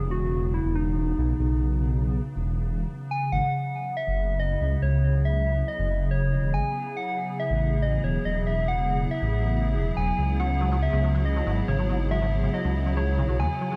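A dark, detuned sawtooth bass rumbles up front through this glitchy, melancholic IDM excerpt at 140 BPM in straight 4/4, its beating low end holding until 13.5 seconds. Above it, a hollow, flute-like pad sustains soft chords, its mellow square and triangle tones warbling under ensemble chorus and the grit of a vintage 12-bit sampler. A round, gentle FM lead with a keys-like struck attack carries the melody, coloured by chorus, tremolo, vibrato, cassette tape wear and tape echo. The harmony moves from C#m7 to F#m7 at 3.5 seconds and returns to C#m7 at 10.4 seconds, where a rubbery acid bass slips in with resonant, saturated arpeggios, a filter sweep and dub echo. The echo-heavy mix sits in light reverb, tuned slightly flat to A4 = 435 Hz, and the passage is cut from a longer piece.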